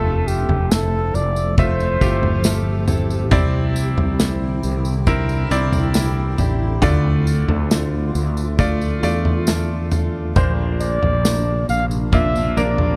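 A mellow flugelhorn with jazz-style vibrato sings over a brilliant grand piano, a cloudy, evolving granular pad with its own reverb in the background, a very quiet, full-bodied fingerpicked steel-string acoustic guitar and a growly, up-front fretless electric bass, joined at 0.3 s by a jingly, close tambourine and at 0.5 s by a dark modern studio drum kit with a tight kick, before the horn rests and returns at 10.4 s in this hopeful, heartfelt pop ballad excerpt at 68 BPM in F major, moving through Fmaj7, Cadd9, Dm and Bbadd9 in a small room.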